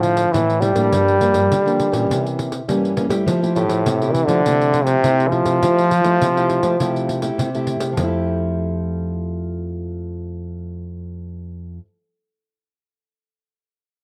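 Samba and choro in F major at 102 BPM, this playful, lively excerpt puts a brilliant, punchy, jazz-style trombone solo up front with vibrato, scooped notes and a cassette-tape tint until 7.4 s, over a fingerpicked nylon-string guitar with fresh strings playing accompaniment and a thumb-plucked, up-front nylon-string guitar carrying the bass with audible finger squeak, while a close, jingly pandeiro keeps the straight 4/4 pulse until 8.1 s, all set in a moderate studio reverb on a home cassette recording.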